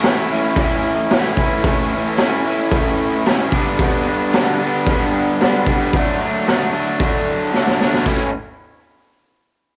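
Garage rock at 112 BPM in A mixolydian, rowdy and raw, with an up-front overdriven electric guitar riff, bright and double-tracked, moving through A, G and D over a boomy, saturated drum kit of crash, hi-hat, kick and snare with a rolled-off top, both on cassette tape with light reverb, the drums breaking into a fill at 7.5 seconds before both parts stop around 8.3 seconds as the chords return to A in this cut from a longer piece.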